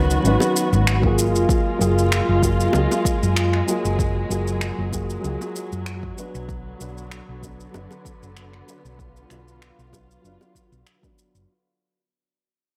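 A sunset chillout piece at 96 BPM in 4/4, carrying a warm, sunny mood with a light swing on the sixteenths, cut from a longer track and fading out across its full 11.5 seconds. A dark, mellow concert grand piano plays the accompaniment with a touch of delay, its intimate, boxy tone revealing audible action noise and deep bass, while a distant chamber string section holds bowed chords with expressive vibrato beneath it. Up front, a round, amped hollow-body short-scale electric bass played with the fingers anchors the low end. The rhythm comes from layered electronic shaker and finger snaps and a deep electronic kick drum that enters at 1.0 seconds, both overdriven and re-recorded in a small room, joined by close, low-tuned acoustic bongos. The harmony moves from G#m9 to F#maj9 and then to Bm at 6.5 seconds, all set in light reverb with small-room ambience.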